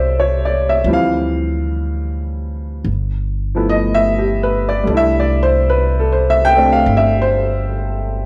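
A large studio's moderate reverb surrounds this brief, late-night jazz ballad excerpt, with both players sitting up front. At a slow 60 BPM in C major with a gentle swing, a boxy, woody upright piano with short sustain comps through a rootless Fmaj9, then Dm11 and G13, before settling on C6 at 4.9 seconds. A thumpy, pizzicato upright bass on steel strings anchors the low end with a warm, romantic glow.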